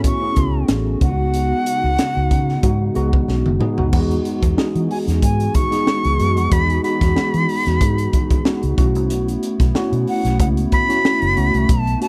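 An airy metal jazz flute carries the melody from 0.1 seconds, sitting up front with a soft attack, expressive vibrato and a warm tone. This slick, urban slice of polished 1980s jazz-funk pop moves in 4/4 with a light swing on the sixteenths. A worn, mellow tine electric piano, slightly out of tune and heard through built-in speakers, plays the accompaniment through analog chorus. Beneath it, a hollow, detuned pad holds dark, sustained chords in the background. A round, foam-muted fingered electric bass and a crisp fusion drum kit, with a punchy kick, high-tuned snare and pumping small-room sound, drive the groove, and a drum fill from 3.3 to 3.9 seconds leads into a new section as the harmony moves from A6 and C#9sus4 to Emaj9 and B9sus4. A small room reverb frames this fragment of a longer piece.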